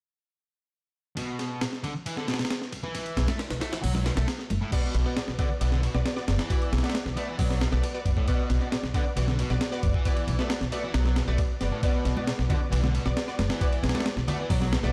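Gritty and funky, this breakbeat excerpt opens at 1.2 s with a compressed, sampler-style drum kit carrying a thumpy kick and tape-warmed grit, alongside a bright, double-tracked fuzz guitar riff run through tape echo; a woody pizzicato upright bass sits up front from 3.2 s, ringing congas sit in the background, and from 4.7 s a bold, detuned sawtooth orchestra-hit-style synth stab with phaser and echo punches over a Bm chord in a dark, dry production.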